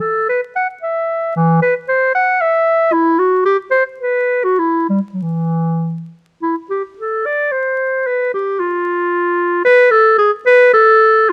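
A close, detailed recording with light reverb and a layer of vinyl crackle presents a solo clarinet, clear and up front, with a smooth top to its tone. This is a baroque-style classical fantasia for unaccompanied clarinet in E minor, cast in 3/4 with a rubato feel that lets the pulse drift between 95 and 116 BPM. The mood is solemn and introspective, the single line ranging from E3 up to F#5 across its short span. The clarinet plays alone from 0.0 to 11.3 seconds, stating one section and then returning to it at 6.4 seconds. Cut from a longer piece, this passage offers a brief, intimate glimpse of a lone voice in classical-style reflection.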